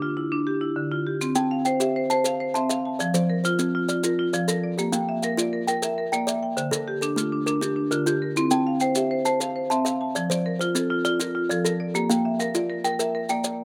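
The sound is dry, captured outdoors with little reverb, in a short passage cut from a longer piece. This is southern African traditional music built on an mbira-style interlocking cycle in 12/8, moving at 134 BPM in dotted quarters with a straight, hypnotic and warm feel in C mixolydian. A marimba played with hard mallets opens alone at 0.0 seconds, its rosewood bars giving bright, woody, percussive arpeggios that sit up front. Grainy, mellow maracas join at 1.2 seconds, and a kalimba enters at 1.4 seconds with short, plucked arpeggios whose hollow box tone shares the marimba's range and forward placement. Underneath, the harmony cycles through Dm, C, F and Bb twice, keeping the pattern circling steadily to the end.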